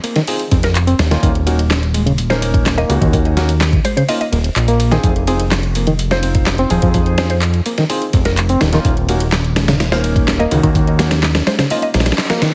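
Funky and raw, this breakbeat excerpt runs at 126 BPM in a straight 4/4, cut from a longer piece and moving through F7(no3), Ebm7, Fm7 and back to Ebm7. A gritty sampler-style soul kit with a thumpy kick and medium-tuned snare sits up front, layered with a quieter electronic garage kit adding handclaps, hi-hat and ride cymbal, both kits dressed in studio reverb. A fat, detuned analog bass enters at 0.5 seconds, its sawtooth and square tones thickened by tube saturation, ring modulation and a filter sweep. A reedy, lightly overdriven electric piano plays the riff with fast tremolo and digital delay, while a dark, mellow concert grand adds delayed stabs and a woody, FM-flavoured mallet pluck carries the melody in the background through chorus, telephone, cassette coloring and digital delay. The whole mix has a heavily compressed radio sound with vinyl crackle and light reverb, and a band accent lands at 12.2 seconds.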